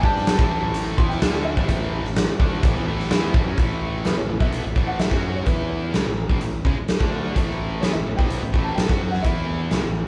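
Cassette-tape grit and a moderate large studio reverb frame this confident, sunny classic rock excerpt, played live in one room at 127 BPM in A mixolydian: a huge arena drum kit sits up front with a punchy kick and medium-tuned snare, a growly fuzz fingered electric bass drives underneath, a distorted electric guitar and an overdriven electric guitar play bright, picked riffs in the background, a very quiet, double-tracked fuzz guitar joins at 3.6 seconds, and a felt-muted upright piano carries a dark, boxy melody through an analog delay.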